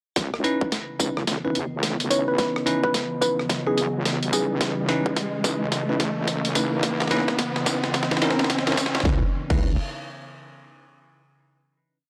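Swaggering and gritty, this whole glitch hop piece in C# minor at 108 BPM with a swung 16th feel is a build over a C#m9 chord, where a punchy, overdriven electronic kick and a compressed, pitched-down sampler-style kit with a high-tuned snare, rim click, tambourine, hi-hat and crash drive a drum fill under a heavy, saturated sawtooth wobble bass, bright bell-like electric piano stabs with tape echo, a woody wave-folded pluck melody from 2.1 s, a warbling, nostalgic sidechain-pumped pad and an electronic riser from 2.5 s, until a final chord arrives at 9.1 s, all wrapped in a dry cassette-tape sound with light digital ambience.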